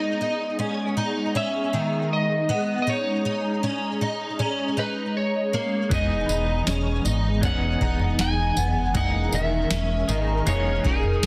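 Dreamy and floating, this dream pop excerpt moves at 79 BPM in a straight 4/4, set in E lydian. From the start, an electric slide guitar carries the melody with a slightly broken-up edge and a trail of delay, while a hollow, flute-like pad holds airy sustained chords beneath it and a picked twelve-string acoustic guitar, up front and shimmering with octave-doubled strings, plays arpeggios through ensemble chorus and delay. At 5.9 seconds the band fills in: a round, deep analog bass, a booming drum machine with a tape-warm tone, deep kick, tonal snare, tambourine and toms, and a clean, scooped semi-hollow electric guitar adding accompaniment through tremolo and lush chorus. A worn, slightly out-of-tune celesta with a delicate, bell-like sweetness drifts in at 6.2 seconds in the background, echoed by delay. The harmony moves from Emaj7 to G#sus24, then back to Emaj7 and a rootless F#13/E, all bathed in light reverb and digital ambience under a dense, heavily limited modern master.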